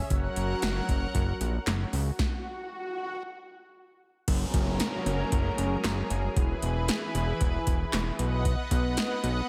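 A straight 4/4 synth-pop groove at 115 BPM comes from an electro analog drum machine, with a deep kick, punchy snare, handclaps, metallic hats and crash, all overdriven and treated with gated reverb. Underneath, a fat, detuned sawtooth bass with a filter pluck sits up front beside a lush, airy unison pad that holds chorused chords. The section in F# mixolydian halts for a stop from 2.2 to 4.3 s as a downlifter and swell sound, then the wistful yet upbeat excerpt moves through F#add9, E and B.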